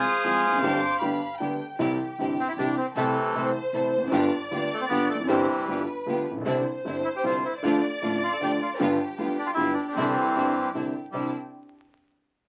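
A rubato tango in 3/4 at 154 BPM, this short, nostalgic and elegant excerpt in C major is cut from a longer piece and tuned to A4 = 436 Hz. A reedy, bright bandoneon carries the melody up front, joined from the start by a smooth, even, bowed violin section playing a second line with vibrato. From 0.2 seconds a concert grand piano supplies intimate, vintage accompaniment with deep bass and audible action noise, while a distant, lush symphonic string section adds focused stabs and a woody pizzicato upright bass sits in the background. The harmony opens on Fm and Gsus4 before settling into C, moving through Am/C, G7, Dm and Cadd9. A small room reverb and the crackle of a very old 78 rpm record give the whole sound an aged, faded character.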